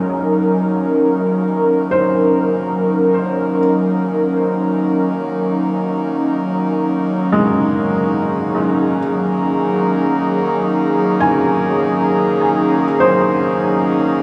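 A wet echo chamber surrounds this ambient piece, with a 2.5-second reverb tail and an echo-heavy mix whose top end is rolled off above 10.8 kHz. It is a serene, reflective passage in free time and Eb dorian, tuned to A4 = 438 Hz, resting on a single Ebm7 chord for the full 14.2 seconds. Up front, an airy, breathy pad holds sustained chords with a slow attack and long release, its detuned sawtooth and triangle tones carrying a nasal edge, a noise layer and chorus while a filter sweep moves through it. A felt-muted upright piano plays soft, intimate arpeggios with short sustain, a boxy body and audible action noise, trailed by tape echo. Beneath them a pedal harmonium sustains a reedy, breathing drone that fades in across the whole span, cut from a longer piece.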